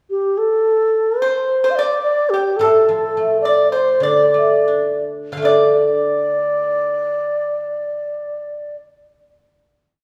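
In a free, rubato 2/4 that slows in the latter half of its single section, this short, tender and wistful piece for a traditional Chinese chamber ensemble opens with a pure, mellow bamboo xiao up front, carrying an ornamented modal melody with a tongued, straight tone and rolled-off highs. From 1.2 seconds a dry, percussive pipa plucked with fingerpicks plays the same line with its own ornaments, and at 2.6 seconds a ringing, silvery guzheng joins up front with a low-string accompaniment. The piece settles onto a final chord that rings out in the moderate reverb of a recital hall.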